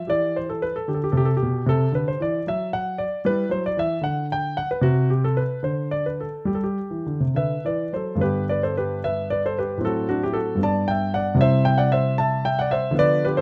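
Classical baroque-style suite movement in 6/8, serene and radiant, for a solo grand piano played with rubato across a range from G2 to A5, its intimate, natural, up-front tone carrying deep bass and audible action noise in a dark, warm production with light reverb, moving from an opening section into a second at 8.2 seconds in this fragment cut from a longer piece.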